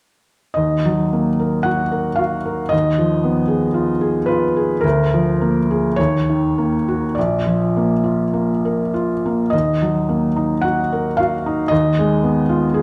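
A felt-muted upright piano, soft and intimate with audible action noise, plays alone from 0.5 s to 12.8 s in this wistful, mournful romantic nocturne in Eb minor, moving in rubato 4/4 at 49-58 BPM through Ebm, Fm7b5/Eb, Bb7/D and Bb chords across a range from Bb1 to Gb5, set up front in a moderate recital hall reverb with a dark production, in a passage cut from a longer piece.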